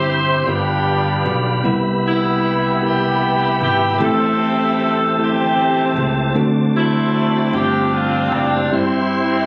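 Heard through a phone placed in the room, this short cut from a longer slow gospel piece sits in a moderate, large studio reverb. The mood is jubilant and reverent, moving in an unhurried 6/8 at 51 dotted-quarter beats per minute in C major, with a straight feel. Up front, a mellow saxophone section carries the melody in a vintage, jazz-style ensemble voice with vibrato. Beneath it, a worn, slightly out-of-tune tine electric piano gives clean, direct accompaniment, while a smooth tonewheel organ holds sustained chords above, coloured by chorus vibrato, key click and a stopped rotary speaker. A bright, growly fingered electric bass anchors the progression from G7 through Cmaj7, Am7, D7 and G9sus4, dropping out at 8.7 seconds as the others settle on C/G.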